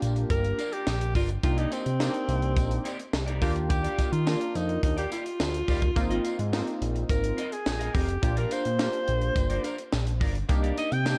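A straight 4/4 groove at 106 BPM drives this short cut from a longer early-eighties boogie funk piece in C minor, with a funky, late-night mood. An up-front funk drum kit with a high-tuned snare, tight kick and hi-hat anchors the beat from the start. A fat, thick analog bass with sawtooth and square-wave tones and a moving notch sits up front alongside it, while a jingly tambourine stays distant in the background. A punchy, warbling vintage polysynth with a filter sweep and chorus comps through chords such as Gm7, Cm9, Ebmaj9 and Ab69, and a clean, picked electric guitar with lush chorus plays a riff from 0.2 seconds. Over it all, a breathy alto saxophone solos from 0.3 seconds with vibrato, subtone and scooped notes in a jazz style, set up front in a dark, warm production with light reverb and small room ambience.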